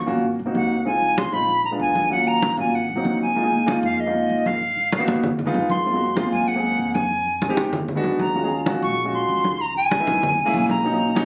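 The silver concert flute sounds first, its airy, reedy tone carrying the melody in this lively, danceable Afro-Cuban jazz excerpt with a straight feel. Within a moment the grand piano, bass and congas join. The flute sits up front with vibrato and tongued notes, its brightness softened by rolled-off highs, while the warm piano shares the foreground with its accompaniment. Underneath, a pizzicato upright bass with steel strings gives a woody, growly, thumpy low end, and close, dry congas ring out under soft hands. The harmony moves through rich jazz chords such as Dbmaj9, Gbmaj9#11 and Ebm11, with a new section opening at 3.4 seconds. Recorded on a phone in the room, the mix has a moderate booth ambience, club reverb and compression.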